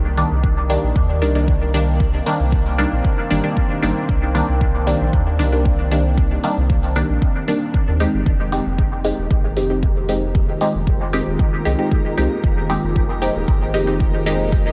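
A muted, detuned chord stab sits up front in this meditative, cavernous stretch of dub techno, its filtered plucks colored by chorus, phaser, cassette-tape grit and dub echo. Beneath it, a deep, round sub bass with tube saturation and a moody, wave-folded ambient pad both breathe with sidechain pumping, the pad's slow attack and long release smearing its sustained chords into the reverb. A deep electronic kick drives the straight 4/4 pulse from the front, with dark hi-hats ticking further back. The harmony rests on Cm7 before shifting to Fm7 at 8.3 seconds, and at 9.0 seconds a grainy, flickering granular texture slips in quietly behind the other parts. Light room reverb gives the whole piece a hollow, underground depth, and it is cut from a longer track.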